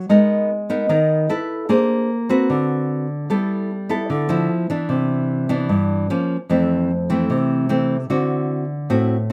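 A fingerpicked nylon-string guitar plays alone, up front and warm in a classical style, through a relaxed, sunny bossa nova at 150 BPM in 4/4, drifting through colorful chords like Abmadd9 and Bb9 before settling into G major at 3.3 s with G69, Cmaj9 and Fmaj7, all captured by close, detailed microphones with light reverb in a short cut from a longer piece.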